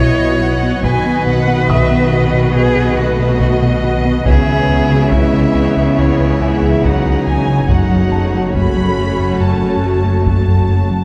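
Vast and brooding, this cinematic cue blends orchestra and electronics at a slow, straight pulse over B, C#m7 and F#m, with a rich solo cello carrying the melody through a touch of delay while a hushed violin section joins on the melody and a darker, woody violin section adds a second line. Clear violas fill the middle, a very quiet, distant horn section and a glassy, warbling FM pad hold sustained chords, and a round, nasal analog bass riff sits alongside a low foundation of cello and double bass sections, with a soft felt-muted upright piano adding faint texture. A compressed, saturated taiko ensemble struck with hard sticks enters at 0.8 seconds, all set in a moderate concert-hall reverb with a dark production.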